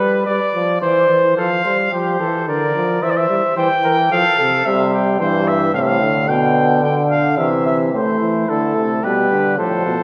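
Joyful and stately, this short passage from a longer classical canzona for brass ensemble moves in an imitative style at 110 BPM in 3/4, set in F major. A clear flugelhorn carries the second line over a soft-attacked trombone accompaniment that sounds distant and roomy and runs throughout. The trumpet takes the melody from 1.4 seconds, high and a touch remote in the hall. At 4.7 seconds the flugelhorn drops out and a euphonium enters on the bass with a light vibrato and a vintage tone. The flugelhorn returns at 7.9 seconds as the harmony turns toward A minor. The ensemble sits in a generous church or concert-hall acoustic with a wet reverb that lingers for about 2.0 seconds.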